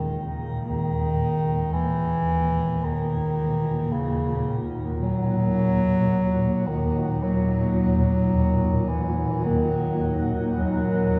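In a straight, unhurried 4/4, this dark ambient drone excerpt opens onto a dark, unsettling mood. Up front, a swarming drone of detuned, granular tones sits low, with a filter sweep running through its whole length. A mellow bass clarinet carries the solo melody in a smooth, classical style, coloured by shimmer reverb and analog delay. In the background, a deep, moody pad holds sustained chords on an E-flat minor harmony, fading in across the piece and thickened by chorus. A bronze singing bowl adds a very quiet, close-miked ring with slow beating, while carillon bells play barely audible, soft arpeggios until 4.3 seconds. A wet spring reverb and echo-heavy mix give the whole a cavernous, haunted space.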